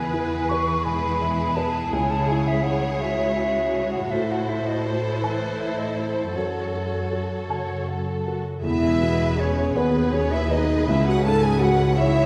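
A clear, punchy French horn section enters up front at 8.6 seconds with sustained chords, joined by a bowed double bass section in the background, lifting this moving, uplifting cinematic film-score passage in a rubato 6/8. From the start, a rich studio violin section carries the focused, vibrato-laden melody, while an airy, hollow concert flute and a lush symphonic violin section with expressive portamento play second lines. Beneath them sit a soft, muted upright piano with audible action noise, a close viola section, a ringing fingerpicked harp playing arpeggios and a smooth cello section on bass, all in a wet scoring-stage reverb.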